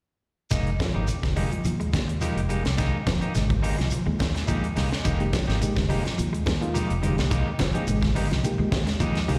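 Heard through a venue's PA, with small-room ambience and a recital-hall tail, this hypnotic, defiant afrobeat cut moves at 106 BPM in F minor over a single Fm11 chord. A round, foam-muted fingered bass anchors a tight, up-front funk kit with a high-tuned snare and a tight kick. A dark, clean guitar plays background arpeggios through spring reverb and slapback echo, while a twangy, slightly broken-up picked guitar adds stabs, and grainy shekere and distant, low-tuned congas (from 0.8 s) sit further back, then at 5.2 s a reedy, bright electric piano joins with fast tremolo and slapback echo.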